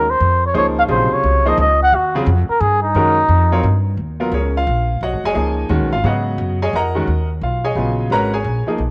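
Modal jazz in a cool, spiritual mood, swinging at 175 BPM in 3/4, this excerpt opens on a veiled, softly attacked cup-muted trumpet melody with light vibrato that stops at 3.8 s, while a clear, vintage grand piano accompanies and a woody, thumpy pizzicato upright bass anchors the low end, as the harmony shifts from Ebm11 to G#m11 at 4.0 s under moderate spring reverb in a small room.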